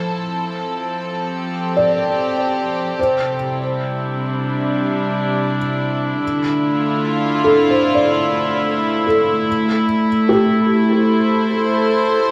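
A sul tasto string section fades in with pure, floating sustained chords at the front of this reflective, melancholic ambient excerpt in D minor at 74 BPM, joined at 1.8 s by mellow felt-muted upright piano arpeggios with audible action noise and a diffuse delay, all within a wet concert hall reverb as the harmony moves through Fadd9, C, Dm7 and Am7.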